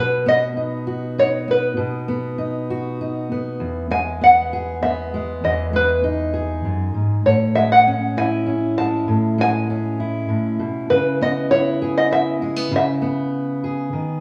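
A roomy studio sound with generous reverb frames this gentle, warm folk excerpt in E major, moving at 99 BPM in a straight 3/4. Up front, an open-back banjo carries the melody with a twangy, plunky, percussive bite, while a full-bodied dreadnought steel-string guitar, fingerpicked on fresh strings, plays the accompaniment. The chords pass from B through Emaj7 and Amaj7 to C#m7, with the banjo stopping at 13.9 seconds, just before the guitar ends at 14.2 seconds.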